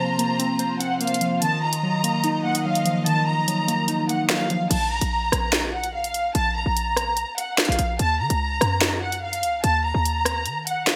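Bright, 1980s-style digital production with plate reverb frames this tense, dark half-time drill excerpt, where a woody, sul tasto violin section carries the melody throughout over warbling, detuned lo-fi synth keys with chorus and a smooth symphonic string section holding sustained chords until 4.7 s, when a punchy, tight 808-style bass enters beneath an up-front electronic drum kit of sharp snare, handclaps, rim clicks, hi-hat and crash cymbal treated with gated reverb.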